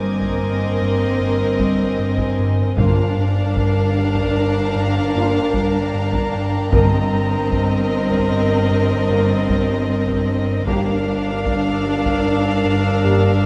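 Eerie and uneasy, this excerpt of a cinematic suspense score moves at 76 BPM in a straight 5/4 in G minor, with hushed, bowed chamber violins carrying a sul tasto melody over a second violin line and a vibrato-laden viola accompaniment, while cellos and double basses sit in the background beneath a smooth, dark synth bass riff with a ring-modulated edge. Distant, mellow French horns and a warbling, lo-fi tape-like pad hold sustained chords, and a high, shadowy violin texture hovers faintly above. Taiko drums struck with hard sticks enter at 0.2 seconds, timpani join between 2.8 and 7.9 seconds, and the whole ensemble sits in a moderate scoring-stage reverb as the harmony shifts from Abadd9/G to Gm7 and Eb6/G.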